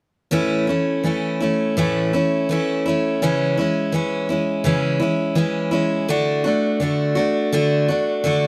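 Moving in a straight, unhurried 4/4, this gentle, hopeful folk excerpt features a lone picked steel-string acoustic guitar, bright and full-bodied with fresh strings and an up-front jumbo body, playing an accompaniment that shifts from A to C#m at 3.2 seconds and D at 6.1 seconds, captured by close, detailed microphones with light reverb.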